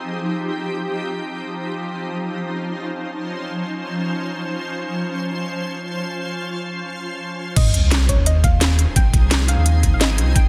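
Dreamy and warm, this brief liquid drum and bass fragment in free time opens with a shimmering, ethereal ambient pad of sustained chords, its bright, granular tone carrying an octave-up shimmer and a filter sweep that runs until 7.6 seconds. At 7.6 seconds the drop lands with an impact: a deep, round sub bass, a gritty, thumpy electronic kick and a layered garage kit of cracking snare, crisp hats and crash arrive, the kit low-pass filtered and tape-toned after being re-recorded in a large room. A soft, dark pluck with chorus and delay carries the melody above them, while a sub drop rumbles in the background until 9.0 seconds.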